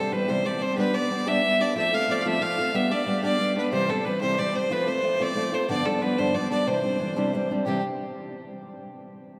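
A clear, earthy single fiddle with light vibrato carries the bright, rollicking melody of this short Celtic folk cut in C major, moving at 122 BPM in a straight 6/8 over a warm, fingerpicked steel-string acoustic guitar that follows a simple C, G, F progression to a closing Cadd9, both set in a vast, echoing cathedral reverb.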